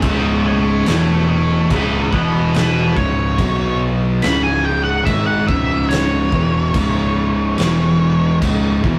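Stoner and doom metal at a slow 72 BPM in straight 4/4 and C# minor, this sludgy, hypnotic nine-second fragment is cut from a longer piece. An octave-fuzz lead guitar sits up front with a dark, picked solo between E4 and B5, colored by wah, distortion and slapback echo, and it drops out at 8.4 seconds while the rest carry on to 9.0 seconds. Beneath it, a bright, double-tracked distorted guitar and two thick fuzz guitars, one in the background and one very quiet, churn through the riff in the low register, with the chords moving between C#m, E5, C#5 and B5. A fingered electric bass with overdrive and a fuzzy, direct-and-amped tone holds the bottom between C#1 and B1. An oversized, low-tuned acoustic drum kit with a punchy kick, fat snare, dark crash cymbal and a gritty, saturated, pumping stone-room character drives the groove. The rough rehearsal-room recording carries a moderate studio reverb of about 0.6 seconds.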